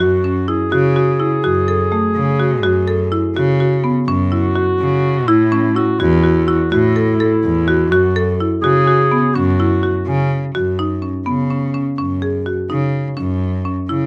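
Contemporary instrumental chamber music in a restless, pensive mood, moving in an uneven 11/8 at 251 eighth-note beats per minute with a straight feel in F# minor. A breathy clarinet carries a second line in a dark, subtoned jazz style with light vibrato, falling silent at 10.5 seconds as the music shifts into a new section. A marimba played with medium hard mallets spins arpeggios on woody padauk bars, its percussive tone smooth and up front until 14.0 seconds. Beneath them, a single bowed cello holds the bass with a rich, even sound and vibrato, sitting close and prominent through to the end. The recording is dry and intimate, captured with close, detailed microphones, and this passage is cut from a longer piece.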